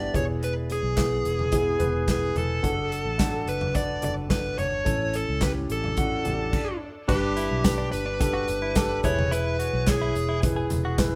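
Lightly reverberant and captured like a band playing live in one room, this hopeful piano-driven pop excerpt at 108 BPM in 4/4 sets an overdriven, up-front lead guitar melody with tape echo over a mellow baby grand with audible action noise, a round foam-muted fingered bass and an acoustic studio kit with a punchy kick and handclaps, while a background electronic swell enters at 5.9 seconds and carries through a brief stop at 6.5 seconds before a clean, compressed direct guitar riff and a faint jingly tambourine join at 7.1 seconds.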